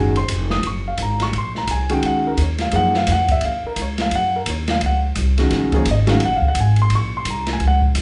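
Spiritual and hypnotic, this brief fragment of swung modal jazz rests on a single Ebm9 chord, with an up-front, warm grand piano accompanying over a woody, plucked steel-string upright bass that is also close in the mix, while a dark, smooth acoustic drum kit with a punchy kick, medium-tuned snare, hi-hat and ride enters at 0.2 s, the trio heard playing together in one room under a moderate large-studio reverb with a muted top end.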